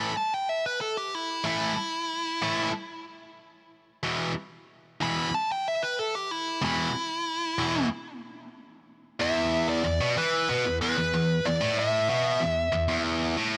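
Set in a straight, even 4/4, this menacing, heavy rock excerpt is cut from a longer piece. A double-tracked, high-gain rhythm guitar drives a low riff throughout, its distorted, picked tone bright and up front, moving from an A5 to an E5 chord at 4.0 seconds. Over it, a nasal lead guitar with a parked wah plays a picked, overdriven solo that runs until 9.2 seconds, carrying a tape echo on its warm tone. After that point the piece moves into a new section, where the lead continues its melody until 13.0 seconds and the riff guitar then plays on briefly alone. Both guitars sit prominently in the mix, framed by light reverb and a digital ambience.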